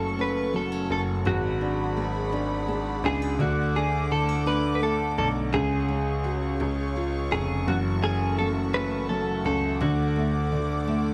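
A slow, aching pop piece in F# minor at 56 BPM, moving in a straight 6/8 with a melancholic cast. Up front, a clean electric guitar recorded direct carries the melody through a lush chorus, compressed and picked, until it drops out at 10.6 s while the rest of the group plays on to 11.1 s. Beneath it, a felt-muted upright piano supplies soft, mellow accompaniment, and a concert grand holds down the bass in its lowest register with deep tone and audible action noise close at hand. A picked steel-string dreadnought guitar sits in the background with full-bodied arpeggios, while a dark string section sustains chords bowed sul tasto, with light vibrato and a soft attack. The harmony moves from F#m through G#m7b5, D and a C#sus4 resolving to C#, then F#m7 and back to D, all in a dark, warm studio production with light reverb, cut from a longer piece.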